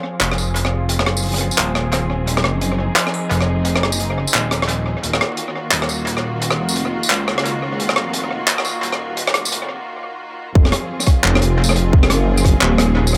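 Half-time drum and bass at 174 BPM with a swung, heavy, dark feel in F phrygian, this excerpt opens with clear symphonic strings holding sustained chords under sidechain pumping and a filter sweep, joined at 0.2 seconds by a deep, rumbling detuned saw bass and a crunchy, gritty breakbeat kit of handclaps, hi-hat, rim click and tambourine with analog delay, before a brief break at 9.9 seconds gives way to a drop at 10.6 seconds where a tight, layered electronic kick punches up front, all set in an echo-heavy mix with moderate spring reverb.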